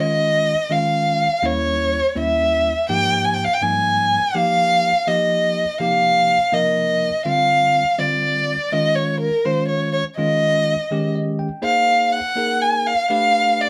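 Jazz in a straight 6/8, slick and bright, with a dark, expressive bowed violin carrying the melody up front, its soft attack, vibrato and portamento sitting close. A bell-like tine electric piano, clean and heard through its built-in speakers, accompanies underneath on suspended and extended chords, slipping in a fill at 10.9 seconds just before the music shifts to a new section at 11.6 seconds. The band plays live in one room with moderate studio reverb, and the clip is cut from a longer piece.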